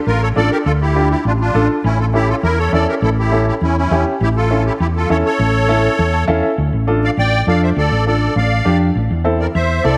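A reedy musette accordion leads this driving, passionate Latin passage, its shimmering tone sitting up front and trailed by a diffuse ambient delay. Beneath it, a hollow-body short-scale electric bass played with the fingers gives a dark, round, amped foundation that stands forward in the mix. A woody upright piano joins at 0.4 s as accompaniment, and it adds a short fill from 6.0 s just before the music moves into a new section at 6.6 s. The harmony moves from D minor to A major early on, then returns to D minor before turning to A minor near the close. The whole mix is soaked in a lush hall reverb that gives it a dreamy, spacious quality, and the passage is cut from a longer piece.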